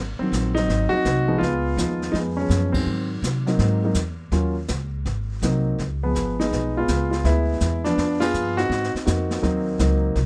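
A dry, closely miked recording captures this short cut from a longer jazz piano trio, sophisticated and swinging at 165 BPM in Ab mixolydian over a run from Ab7 through Db7, Ebm7 and Ddim7. The woody, thumpy pizzicato upright bass and the warm concert grand, with its deep low end, sit up front, while the brushed kit sits further back with dark cymbals, a medium-tuned snare and a boomy kick. The whole band hits accents together at 2.7 and 8.2 seconds.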